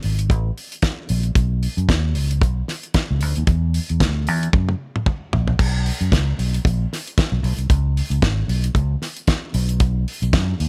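Joyful and celebratory, this short disco cut from a longer piece moves at 114 BPM in 4/4 with a light sixteenth-note swing, settling into B major from 5.6 seconds. A fingered electric bass with a dark, round, amped tone sits up front alongside a damped 70s drum kit whose dry, mid-forward sound brings a fat snare, a tight kick, hi-hat, toms and crash cymbal under a rolled-off top. A drum fill from 4.5 seconds leads into the second section, and the close, nearly reverb-free sound keeps the bass punchy and both parts immediate.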